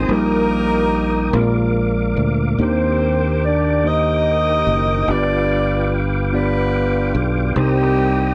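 A slow, straight 6/8 at 48 BPM in dotted quarters carries this reverent yet jubilant gospel passage in Eb major, cut from a longer piece, moving through Eb/Bb, Bb7, Ebmaj7, G7 and Cm7. Up front, a mellow horn section sings the melody with light vibrato and octave doubling, over a clean tine electric piano's accompaniment and a growly, punchy fingered electric bass. A tonewheel organ holds sustained chords high and softer in the blend, lightly overdriven with key click, chorus vibrato and a slow rotary speaker, all captured in a dry, close 1970s-style studio sound.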